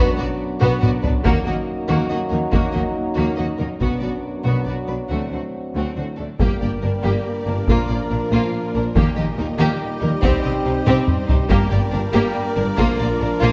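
Epic orchestral film score in a relentless 3/4 at 141 BPM, where a close, expressive chamber violin section carries the vibrato melody over a distant symphonic violin second line, lush background violas, a smooth cello section and a focused double bass section, with sustained chords from bright trombones and mellow French horns and close, dry taiko drums struck with heavy sticks and fills at 0.6 and 10.9 seconds; at 6.4 seconds the music moves from Eb harmonic minor to G minor as a symphonic string section adds sustained chords and a dark trumpet section punches tight stabs, all set in a moderate scoring-stage reverb with a dark, warm production.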